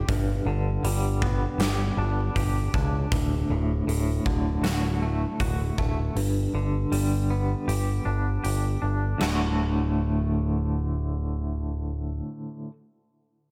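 Quiet-loud alternative rock with a cathartic, anthemic mood, this excerpt from a longer piece moves between G and D over a straight 4/4 pulse. A clean, twangy electric guitar plays fingered arpeggios with tremolo, sitting up front beside a dark, round, overdriven picked bass. A big acoustic rock kit with a punchy kick, medium-tuned snare, hi-hat and splash cymbal rings in a bright stone room until 9.4 seconds, just into the closing section, leaving guitar and bass to carry the rest of it in a small room reverb.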